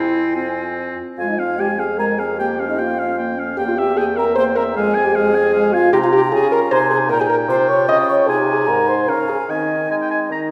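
A quick classical-period movement for wind quintet in triple time, cut from a longer piece, moves with an urgent, restless energy and a flexible rubato feel, shifting from a minor key into a brighter major one partway through. An airy, hollow flute carries the melody with vibrato and tongued notes, a clear, smooth oboe traces a second line, and the warm French horn stands most forward among the accompanying parts, joined by the clarinet and by a distant, roomy bassoon holding the bass. All five play throughout, wrapped in the wet reverb of a recital hall.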